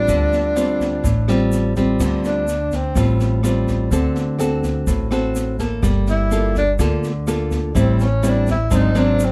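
A lightly reverberant, intimate recording, cut from a longer bossa nova piece in D minor at 125 BPM, puts a full-bodied, fingerpicked nylon-string guitar up front, finger squeaks audible, over a woody pizzicato upright bass and a dark small-room jazz kit with boomy kick, rim clicks and rolled-off cymbals. A breathy, subtone tenor saxophone with vibrato and scooped notes carries a smooth, whispered melody and steps out as the soloist from 2.0 seconds, pausing between 3.0 and 6.1 seconds before returning. A grainy, bright egg shaker sits dry in the background as the chords move from Dm7 through D7, Gm9 and Am7 to G#7#11.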